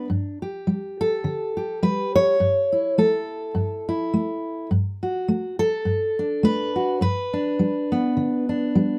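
This peaceful folk piece for solo fingerpicked steel-string dreadnought guitar moves at 104 BPM in 4/4 with a light swing on the eighths, its up-front, warm tone ringing through a moderate studio ambience as the G major harmony passes from Gsus2 to A7/G, D/G and home to G over a brief nine-second fragment of a longer piece.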